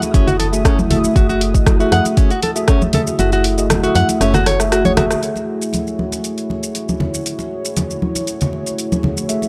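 A deep, up-front electronic kick drives this earthy afro house cut at 118 BPM in F# dorian until it stops at 2.8 seconds, with an overdriven deep house kit of hi-hat, rim click and shaker, thick-skinned hard-hand congas, a round, woody FM bass with tube saturation, a fingerpicked nylon-string guitar playing arpeggios through analog delay, mellow tine electric piano stabs with lush chorus and delay, and a smooth, dark analog pad holding F#m9, while a drum fill and band accent lead into a filter sweep on the electric piano from 5.2 seconds, all in a dry, gritty mix.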